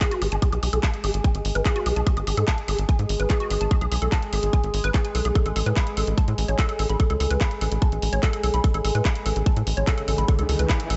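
A resonant sawtooth drone with moving overtones, chorus and built-in reverb holds sustained chords under a woody, warbling wave-folded pluck riff carried by tape echo, both pumping against an up-front, tight electronic kick and a layered garage kit of handclaps and hi-hat in this alien, psychedelic trance excerpt. From 0.2 seconds a punchy, driving sequencer bass with a fast, decaying filter pluck pushes under the move from G#m to Amaj7sus2. A very quiet riser enters at 9.9 seconds, all within a dark production lightly touched by reverb.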